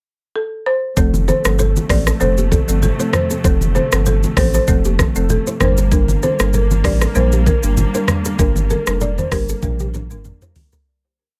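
A woody, dry folk marimba opens with a short hook phrase in the pickup bar at 0.4 s, with a touch of delay. At 1.0 s a joyful, romantic afrobeats chorus in F major kicks in at 97 BPM with a light swing: a second marimba plays syncopated chords, a fingerpicked nylon-string guitar repeats an interlocking figure doubled in sixths with delay in the background, dark, lush symphonic strings hold a pumping pad, and a thick, saturated sub bass bounces with slides. An up-front electronic kit with a knocking kick, metallic hats, rim clicks and shaker drives the groove alongside soft, low-tuned congas, moving from F to Gm at 5.6 s before a fade-out from 8.4 s and a drum fill that closes the piece at 10.9 s.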